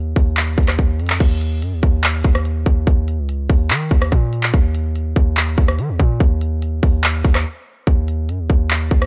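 Hip hop trap fragment at 144 BPM in a half-time 4/4 feel and E-flat minor, dark and melancholic, where a heavy, saturated 808-style bass with a gritty noise layer and fast, decaying attack opens at 0.0 s and sits up front, joined at 0.2 s by an electronic trap kit of hard-clipped kick, crisp hi-hats, handclaps, rim clicks and crash cymbal with a small-room character, all kept dry before a brief break at 7.5 s.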